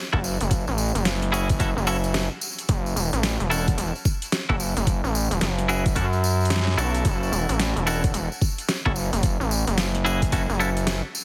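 A swung sixteenth-note groove at 110 BPM drives this swaggering, funky glitch hop cut, with a knocking, overdriven electronic kick up front and a dubstep kit of deep snare and bright hats sitting in studio ambience, while a jingly, close and dry tambourine adds sparkle from 0.2 seconds. A gritty, aggressive synth bass with distorted sawtooth and ring-modulated edges sits on a single F#m7 chord in F# minor. Twangy clean electric guitar stabs carry 12-bit sampler grit, sidechain pumping and dub echo, and the whole mix has a heavily compressed radio sound with light reverb.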